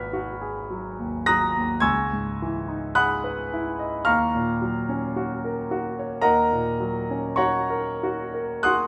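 Impressionist classical solo piano, this short passage cut from a longer piece moves at a slow, rubato pace of roughly 44 to 57 BPM in 4/4, with a nocturnal, hazy mood. A single grand piano carries everything, its tone warm, polished and present, placed up front with long sustain that lets each sonority hang. The harmony drifts through minor colours, from Abm7 to Dbm9 at 1.9 seconds, then Ebm9 at 4.1 seconds, settling on Ebm7 at 6.2 seconds. The playing spans a broad register, reaching from Ab1 in the deep bass up to Cb7 high in the treble. A wet recital hall reverb surrounds the instrument, adding a soft halo that deepens the dreamy, after-dark atmosphere.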